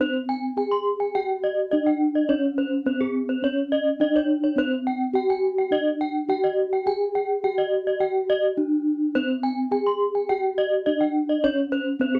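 Gamelan in C pelog, tuned to A4 = 437 Hz, moving at 105 BPM in a straight 4/4 with a brilliant, shimmering mood through this 12.2-second cut from a longer piece. Two bronze gamelan-type metallophones sit up front throughout. The lower one carries the melody with padded disc mallets, its mellow, soft ring bathed in plate reverb. The higher one spins metallic arpeggios under a horn mallet with a boxy small-room character. Paired tuning gives both instruments shimmering beats, and the modest room and dark production keep the sound intimate.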